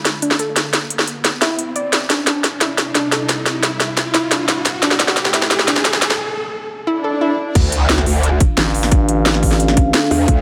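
A dark analog pad opens this tense, futuristic piece of dark technical drum and bass, its moody sawtooth chords carrying a phaser, chorus, gritty 12-bit sampler texture and sidechain pumping, while a riser and swell build beneath it. A drum and bass kit with a cracking snare, crisp filtered hats and crash cymbal drives the build-up at 176 BPM in D minor, and a soft, round pluck spins mellow arpeggios through dub echo as the harmony moves from D minor to C. A filter sweep on the pad and a drum fill push toward a short break before the drop lands at 7.6 seconds with an impact and a sub drop. Here an up-front, tight electronic kick joins a distorted, wobbling growl bass that sounds bright and aggressive with tube saturation. A thick, growling FM bass adds weight from 8.6 seconds, all set in a lush hall reverb in this short slice of a longer track.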